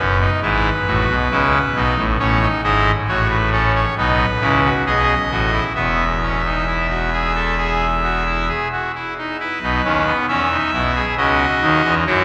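In a straight 4/4 at 67 BPM, this joyful, elegant baroque-style three-part fugue in E major is played by a solo pipe organ on a bright, brassy trumpet stop with baroque voicing, sitting up front and spanning E1 to E5, its harmony moving through E, B and C#m while a long cathedral reverb of 5.3 seconds blooms around it in this short cut from a longer piece.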